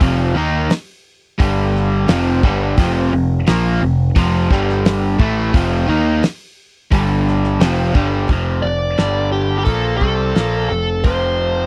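Classic rock at 87 BPM in a straight 4/4, this sunny, confident excerpt sits in F mixolydian, with two overdriven, compressed electric guitars riffing over F5 and G5 chords, one bright and the other up front, until the second stops at 8.3 seconds. A growling, overdriven picked bass and a damped 70s acoustic kit with a fat snare, tight kick and rolled-off top drive underneath, the drums dropping out at 11.2 seconds, while a bluesy, distorted lead guitar enters at 8.6 seconds. The dry, close sound suggests a 1970s studio with little reverb.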